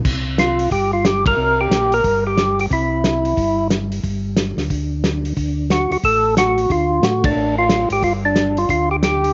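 Soul jazz organ trio excerpt, soulful and greasy, swinging briskly at 181 BPM in 4/4, with a smooth, clean tonewheel organ bass carrying chorus vibrato, key click and slow rotary speaker under a dry, muffled drum kit with dark cymbals and a tight kick, while a fat, lightly overdriven percussive organ with third-harmonic percussion and slow rotary plays the melody from 0.4 s, pauses after 3.7 s, and returns at 5.7 s, the band hitting accents at 1.2 and 7.2 seconds through moderate plate reverb and a rolled-off top.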